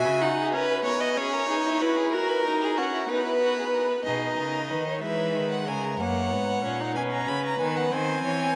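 A baroque-style classical fugue for string quartet, this stately, joyful fragment moves at 62 BPM in a straight 6/8, tuned to A4 = 439 Hz. Up front, a close, expressive first violin carries the melody with a soft attack, vibrato and portamento, while a focused second violin traces its own line and a smooth-topped, gliding viola fills the middle. A rich cello sounds only for an instant at the start, then returns at 4.1 s to anchor the bass as a new section begins, with every bowed part ringing through a vast, echoing cathedral reverb with a 5.7-second tail.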